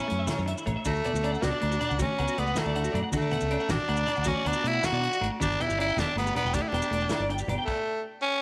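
This sunny, joyful highlife guitar band passage is cut from a longer piece and moves at 106 BPM in 12/8 with a straight feel, in D major. Up front, a raspy, gritty tenor saxophone carries the pop-style melody with vibrato, and it continues alone after the drums stop at 7.8 seconds, finishing at 8.4 seconds. A bright, twangy electric guitar at the edge of break-up plays picked, compressed arpeggios coloured by ensemble chorus and slapback echo, while a clean electric guitar picks its accompaniment in the background. A round, punchy fingered electric bass sits beneath a soul drum kit heard distant and roomy, with a tight kick, medium-tuned snare, hi-hat and crash cymbal. Low-tuned congas played with soft hands, ringing agogo bells and mellow maracas fill out the percussion in the background, as the harmony moves from A to D to G within a moderate echo chamber reverb.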